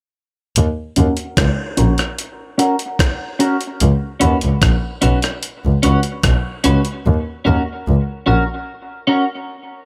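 A light reverb and digital ambience frame this short dub reggae excerpt, cut from a longer piece, in Eb minor at 74 BPM in a straight 4/4 with a hypnotic, heavy mood. A rich, bowed double bass enters at 0.6 seconds up front and close, a single expressive player using vibrato and portamento between Bb1 and Eb2 until 8.4 seconds. Alongside it, a breakbeat sampler-style drum kit with a gritty, thumpy kick, hi-hat and rim click sounds compressed and tape-warm, re-recorded in a small room, and it stops at 7.0 seconds. A bright, twangy clean electric guitar, picked and compressed, joins at 1.0 seconds with accompaniment through analog chorus, a low-pass filter and dub echo, carrying a filter sweep through the first section. The harmony moves from a rootless Ebm7 to Db7sus4 and back to the rootless Ebm7 as the closing section arrives, where the bass and guitar continue after the drums fall away.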